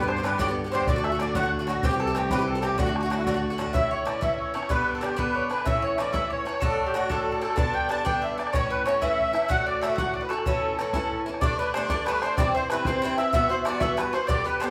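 This is a cheerful, rollicking Celtic jig in 6/8 at 125 BPM, cut from a longer piece and played by a band live in one room with a wet large studio reverb. A reedy, shimmering musette accordion carries the melody, while a bowl-back mandolin sits in the background with a picked second line on double strings. Up front, a metallic Irish bouzouki supplies the accompaniment, and an open, boomy bodhran with a vintage, band-limited character drives the percussion throughout. A single bowed cello, smooth and warm with vibrato, holds the low end only through the opening stretch and stops at 3.7 seconds. At that point the tune shifts from D mixolydian to A mixolydian, then returns to D mixolydian at 11.4 seconds, where the final passage moves through Dsus4, C and Emadd9.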